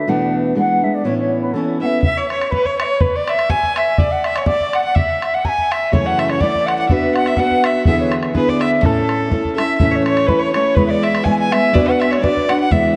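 A dreamy, reverb-soaked hall sound frames this rollicking, bright Celtic polka in A major at 124 BPM, where a mellow wooden flute with vibrato, a soft attack and a diffuse delay carries the melody throughout, a rich, nasal fiddle adds a second line from 1.8 seconds, a boomy, saturated bodhran drives from 2.0 seconds, and a dark, up-front fingerpicked steel-string guitar opens the piece, drops out, then returns at 5.9 seconds with chords moving from F#m7 through Bm and E7 to A.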